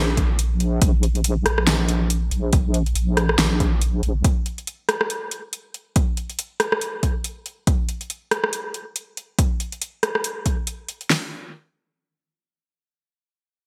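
Deep dubstep with a dark, brooding, half-time swing, where a soft, wobbling square-and-sine bass with chorus sits up front for the first 4.2 seconds alongside two layered, overdriven drum kits, one with a punchy kick, fat snare and metallic hats, the other adding rim clicks and gated reverb, all set in a bright, 1980s-style digital sheen with light reverb before the cut to a brief new section at 11.1 seconds.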